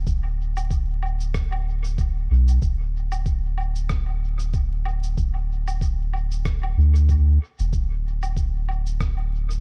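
A soft, round dub sub bass opens the recording, sitting deep and up front with a sustained, fast-attack tone that blends triangle and square wave character, ranging from D1 to D2. Just after, at 0.1 seconds, a muffled, thumpy electronic kick drum arrives, sampler-style and pitched down, with a compressed, tape-warm quality and a touch of studio reverb. Alongside it, a quieter layer of electronic shaker, woodblock and rim click moves through the track, also pitched down and muffled, sent through studio reverb and a dub echo. This hazy, deep piece of ambient dub moves at 94 BPM in 4/4, with a gentle 16th-note swing. The mix is dry in terms of room sound but heavy on echo, with vinyl crackle adding a worn texture. The kick drops out at 9.1 seconds, leaving bass and percussion to carry the final moments of this short cut from a longer piece.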